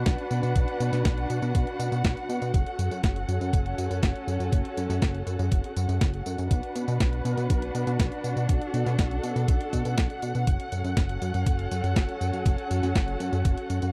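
Bittersweet and danceable, this italo disco excerpt in F# minor at 121 BPM sets a glossy, chorused synth bass with tube saturation up front beneath dark, bowed chamber strings holding vibrato-laden chords, while a thumpy electronic kick and a tape-tinged 12-bit drum machine with hi-hat, medium-tuned snare and tambourine drive a dry, close 1970s-style sound over a Bm to F#m progression.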